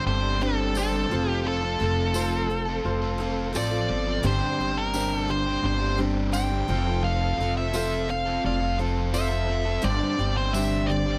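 Folk rock and heartland rock with a hopeful, open-road mood, this excerpt moves at a steady, straight 86 BPM in 4/4, cycling between Gsus4 and F. Up front, a dark, nasal lead guitar with a parked wah and overdrive carries the melody, while a crunchy, double-tracked overdriven electric guitar plays a picked riff beneath it. A woody, thumpy pizzicato upright bass sits prominently in the low end, and a bright picked steel-string acoustic guitar with fresh strings supports from the background alongside a brilliant grand piano with short sustain. A very quiet, shouting tonewheel organ holds sustained chords through a slow rotary speaker with chorus vibrato and light overdrive. A jingly tambourine enters at 0.8 seconds and drops out at 10.7 seconds, all set in light reverb.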